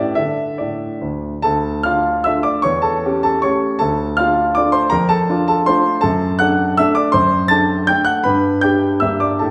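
A warm, polished grand piano plays alone, up front, in this proud, rustic romantic classical dance in triple time with dotted rhythms and a rubato feel, moving from minor to major at 6.0 seconds and heard from further back in a recital hall whose reverb is wet, in an excerpt cut from a longer piece.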